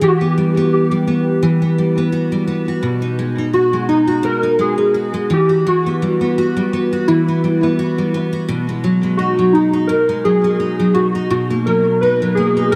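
Indie pop in B major at 85 BPM, this sunny, laid-back excerpt has a gentle 16th-note swing and is tuned to A4 = 436 Hz: warbling, nostalgic lo-fi synth keys with a filter-swept square-and-sawtooth tone carry the melody through ensemble chorus and tape echo, while an up-front, full-bodied picked dreadnought acoustic guitar with analog chorus, pitch drift and tape echo accompanies across all 12.8 seconds, moving over Emadd9, B6 and Bmaj7 in an echo-heavy mix with moderate spring reverb.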